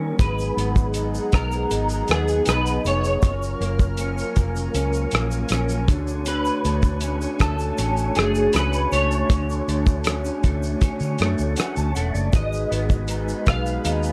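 A dark, hazy production with light reverb frames this nostalgic indie and bedroom pop excerpt at 79 BPM in a straight 4/4, moving from G#m7 through F#maj7 and Dmaj7 before returning to G#m7 at 12.3 seconds. A slightly broken-up, lo-fi guitar with ensemble chorus and vibrato and a mellow, flute-like tonewheel organ with key click, fast rotary speaker and cassette tape open at 0.0 seconds alongside a round, foam-muted bass up front. From 0.2 seconds a picked electric guitar carries the melody with ensemble chorus over a swirling phased analog pad in the background, while a cloth-damped, thuddy drum kit with a tight kick, rim click, hi-hat and shaker sits up front and a grainy tube shaker stays very quiet.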